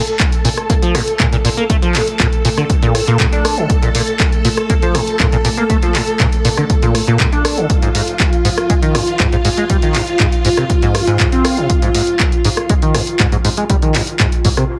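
Raw and playful, this acid house excerpt moves at 120 BPM in Bb major, with a lush vintage string machine holding sustained chords under ensemble chorus and sidechain pumping, moving from a Bbmaj7 chord with the third omitted into a chordless stretch at 7.7 seconds. A punchy analog drum machine supplies handclaps, hi-hat and rim click while an up-front electronic kick drives the beat, and a squelchy, resonant liquid acid bass riff with filter sweeps, overdrive, chorus and dub echo sits prominently in the mix. The whole has a heavily compressed radio sound in a small room.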